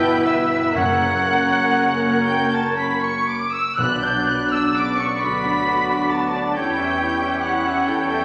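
In a rubato 6/8 at about 39-46 BPM in B minor, this elegiac, melancholic classical fragment places a veiled, con sordino violin section melody high above a second violin line, airy flutes, a solo warm oboe and a shadowy clarinet, while a muted viola section accompanies, clear trombones and mellow French horns sustain chords, lush cellos and veiled double basses carry the bass, and round soft-mallet timpani sound from 0.7 to 5.2 s, set in a wet scoring-stage reverb.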